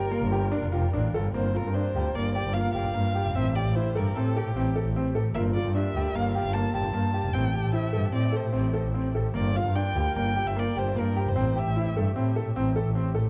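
A bowed double bass, clear and intense with light vibrato and a smooth top, sits up front in this urgent, hypnotic piece of contemporary chamber music, entering at 0.2 seconds. Above it, a single dark violin carries the melody with expressive vibrato, portamento and a soft attack, its line trailing a dub echo until it drops out at 12.0 seconds. A boxy grand piano spins arpeggios, also caught in dub echo, while a reedy, breathing harmonium holds sustained chords in the background. A bell-like celesta adds a very quiet, delicate texture from soft felt hammers, sweet and airy. The music moves in an uneven five-beat metre with a straight feel, rocking between Gm7 and Am7 in a small room with light reverb and an echo-heavy mix, cut from a longer work.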